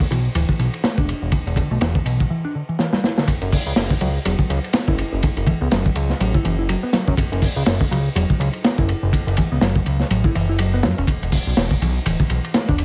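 Breakbeat at 123 BPM in F# minor with a swung sixteenth feel, this raw, funky cut from a longer piece sets a punchy, gritty, saturated breakbeat kit with dark cymbals up front beside a fat, detuned analog bass with tube saturation, while a round, foam-muted picked electric bass riff sits lower in the mix under dub echo, all in a small room with vinyl crackle and a rolled-off top, as a drum fill at 2.8 seconds leads into a drop at 3.3 seconds where the harmony moves from E7 to F#7.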